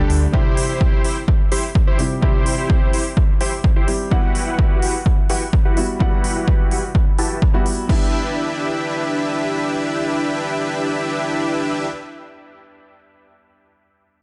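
A digital ambience with nothing above 11.0 kHz frames this euphoric, anthemic festival progressive house excerpt in G major at 127 BPM, where a huge, detuned supersaw riff sits up front with sidechain pumping, dub echo and a filter sweep running until 7.9 seconds. A smooth, vintage-toned grand piano with short sustain plays accompaniment beneath it, also pumping and echoing, while a big-room kit with crisp hats and crash cymbal enters at 0.1 seconds and a punchy, overdriven electronic kick joins at 0.3 seconds, both driving the beat until they stop at 8.0 seconds. The chords move from C to Emadd9 to G6, with the supersaw dropping out at 11.9 seconds and the piano carrying on alone to 14.2 seconds.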